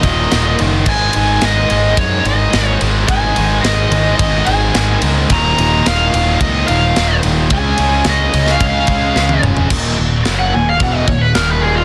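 Dark and relentless, this heavy metal excerpt drives forward in a straight 4/4 feel, built on a dense, heavily limited modern master with little reverb. A smooth, overdriven lead guitar carries the melody with a digital delay, stepping into a solo at 9.7 s, just after a drum fill. Beneath it, a pair of bright high-gain guitars, one heavy and one scooped, churn out distorted riffs in the background, while a double-tracked distorted guitar adds a very quiet layer of riffing; the scooped guitar stops at 9.7 s. A fuzzy, round picked bass sits prominently with a direct, amped overdrive tone, and a tight metal drum kit with bright cymbals, a medium-tuned snare and a clipped, tight kick hits hard from a big room. The harmony moves through Ebm, Abm and Db before returning to Ebm as the solo begins.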